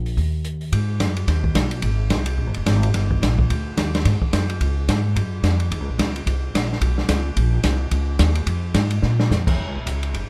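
Small-group swing and bop jazz in Eb minor at a brisk 217 BPM, this swinging, late-night excerpt pairs a woody, pizzicato upright bass ranging from F1 to Bb2 with an open jazz drum kit whose dark cymbals, medium-tuned snare and boomy kick sit up front in a small room with light reverb, the drums offering a fill at 9.0 seconds.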